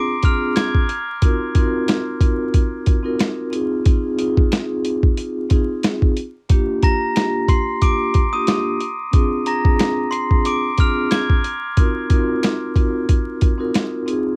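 Confident and warm, this boom-bap hip-hop excerpt moves at 91 BPM with a swung 16th-note feel. A gritty, compressed sampler-style kit with a thumpy kick and medium-tuned snare sits up front on tape, beside a mellow, mid-forward soft-mallet vibraphone with slow motor vibrato carrying jazzy chords from Bb7 through Ebm69/C, Ab6/C and Ebmaj9. A bell-like glockenspiel melody through analog delay rings briefly at the start and returns from 6.8 to 11.4 seconds, while a very quiet, saturated finger snap adds a human touch over lo-fi cassette grit and vinyl crackle in a dry, home-recorded sound.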